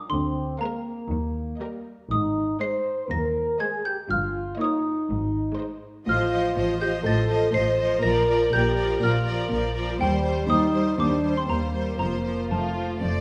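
A woody, dry xylophone played with rubber mallets carries the melody high above this playful, whimsical film cue at 121 BPM in 4/4, its quirky, mischievous character settling into Bb major from 6.1 s. Mellow French horns hold sustained chords from a roomy distance, while focused violins add a second melody and smooth violins a second line, and clear, intense violas fill in accompaniment. Close cellos and even double basses anchor the bass, all on a moderate scoring stage reverb in a short cut from a longer piece.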